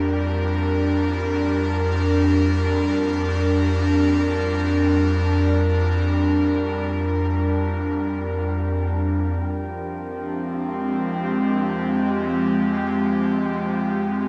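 Ambient fragment in free time, melancholic and spacious, where a breathy, warbling, detuned pad with chorus holds sustained chords up front over a dreamy plate-reverb haze, moving from Gm/F to Fm as a pure, glassy harmonica enters in the background at 9.4 seconds with shimmer reverb and a dark, ominous rumbling drone with phaser and tube saturation rises beneath it from 10.6 seconds.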